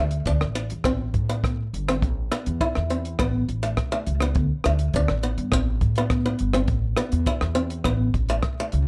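A straight, even pulse in four carries this short highlife guitar band passage, cut from a longer piece and lasting just under 9 seconds. The compact cocktail drum kit comes in at 0.1 seconds with hi-hat, a punchy kick and rim clicks, its sound acoustic, dry and up front. Beneath it, the upright bass plays pizzicato on gut strings, giving a woody, dark and thumpy low end that sits close to the listener. The picked swing-style acoustic guitar carries the accompaniment in a bright, boxy tone, touched by plate reverb. The harmony moves from D5 to Amadd9 and settles on A, then repeats that cycle, lending the music a bittersweet, warm mood, while a light reverb gives the whole group a modest sense of space.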